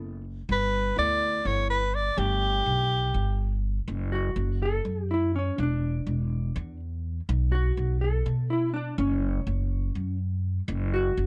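Set in a straight 7/8 at 247 BPM counted in eighths, this driving, intricate progressive instrumental in F# phrygian is cut from a longer piece. It is anchored by a woody, thumpy pizzicato upright bass and a dark, clean, double-tracked hollow-body jazz guitar. A breathy, whispered soprano saxophone carries an intimate melody from 0.5 to 3.6 seconds, and at 3.9 seconds the guitar takes a solo, all under a light reverb.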